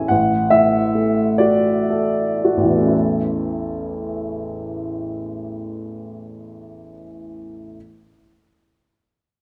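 Warm and hopeful, this brief romantic character piece for solo piano unfolds in 6/8 with a freely breathing rubato feel. An upright piano carries everything from 0.0 to 7.8 seconds, its woody, natural tone sitting up front with a long sustain and spanning from deep bass notes to a gently raised upper register. The opening phrase slows as it moves through its first few seconds, settling from a D chord over an A bass onto a plain A chord at 2.9 seconds, where a new section begins. A recital hall's generous reverb wraps the instrument, and the overall production leans dark. The recording is cut from a longer piece, so it ends in mid-flow rather than at a close.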